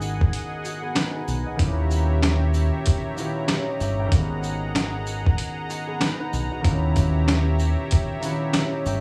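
A dry, small-room sound frames this dark, gritty boom-bap hip-hop excerpt at 95 BPM in G# minor, where an overdriven, compressed sampler-style drum kit with thumpy kick, hi-hat, shaker and medium-tuned snare sits up front with a swung 16th feel beside a round, deep fingered electric bass, while a bright, ringing thumb-plucked concert harp and a smooth, detuned sawtooth analog pad with chorus carry G#m7 and D#7b9b13 chords, and faint jingly sleigh bells linger in the background.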